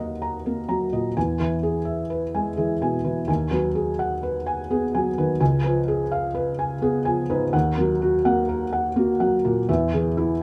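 A light reverb surrounds a soft, up-front felt-muted upright piano whose mellow tone carries audible action noise and a natural, intimate warmth. This melancholic, intimate neoclassical minimalist excerpt is played solo at 84 BPM in 3/4 with a rubato feel, in G# minor with A4 tuned to 439 Hz. Across its 10.4 seconds, spanning C#2 to A#5, the piano moves through D#m, E, G#m7/D# and C#7 before returning to D#m and E.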